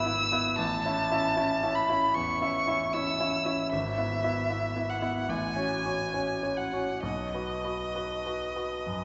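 Warm and serene, this brief romantic classical passage for violin and grand piano moves with a gentle rubato in 4/4. A single bowed violin carries the high melody up front with smooth, even vibrato, while the clear grand piano accompanies from the deep bass into the middle register with long sustain and audible, intimate action noise. A generous church-like reverb surrounds the duo and softens the upper reaches of the sound.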